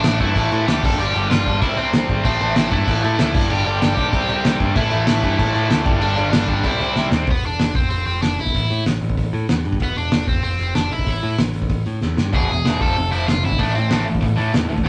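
Raw and urgent, this punk rock excerpt charges along at 190 BPM in a straight 4/4, centred on A minor and cut from a longer piece. A tight, double-tracked distorted guitar drives the riff up front, drops out at 7.3 seconds as the second section begins, and returns at 12.3 seconds, while a cranked stack guitar carries the overdriven, picked melody throughout. Underneath, a bright, punchy picked electric bass runs the whole way, recorded direct. The loose indie drum kit sits up front with a fat snare, punchy kick, dark cymbals and a pumping room sound, roughened by vintage 12-bit sampler grit, with fills at 7.0 and 12.0 seconds. The whole take has the rough feel of a rehearsal room caught on cassette tape, set in moderate studio ambience, with the harmony moving from power chords through colourful passing chords before landing on A minor.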